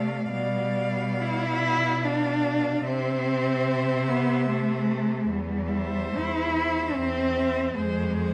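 Tender and warm, this brief excerpt from a longer classical piece for cello ensemble moves at 72 BPM in a rubato 3/4 in C major, with a rich, focused bowed cello singing the high melody over a second soft-attacked cello line sliding expressively in the background, while two distant-sounding but up-front cellos supply the glowing accompaniment and bass with vibrato and portamento, all bathed in the reverb of a recital hall as the harmony passes from G7/B to C, C/E and Fm.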